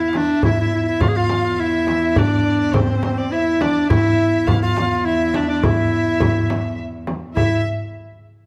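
This melancholic, soulful Arabic maqam ensemble piece, cut from a longer work, opens with a solo clarinet melody up front, present and classical in style, moving between C4 and G#4 at 104 BPM in 3/4 with a straight feel. From the start, a single bowed violin carries a smooth, even second line with vibrato from C5 to F5+27c, set distant, while a lone bowed cello holds a focused E2 drone with vibrato until 7.4 seconds. At 0.1 seconds a metal-shell darbuka enters, crisp and deep under hard hands, alongside a large-sounding frame drum played with soft hands in the background. By 0.4 seconds a dark studio violin section adds a lush, woody sul tasto second line with vibrato, C5 to F5+25c, sitting far back behind the others. A recital hall reverb with a 1.6-second decay surrounds the ensemble, captured by close, detailed microphones.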